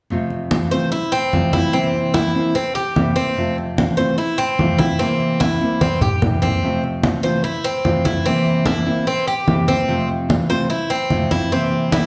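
Heard from further back in a large, reverberant studio with a softened top end, this sunny Cuban son and guajira section, cut from a longer piece, sways between Fmaj7 and C7 in a straight four. Up front, a full-bodied fingerpicked nylon-string guitar carries the accompaniment, and from 0.7 seconds a bright, metallic Cuban tres with picked double strings adds arpeggios. Low-tuned, thin-skinned congas struck with hard hands keep the percussion going throughout, with a drum fill at 5.8 seconds.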